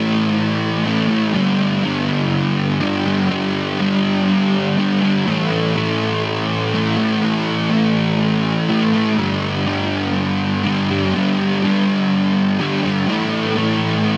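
Brooding, dreamy rock at 123 BPM in straight 4/4, a fragment of a longer piece in which a lone double-tracked fuzz guitar, picked between G2 and A3 and placed up front with compression, distortion, analog chorus and analog delay, alternates between A5 and G5 for 14.2 seconds inside a huge ambient reverb and a dense, heavily limited modern master.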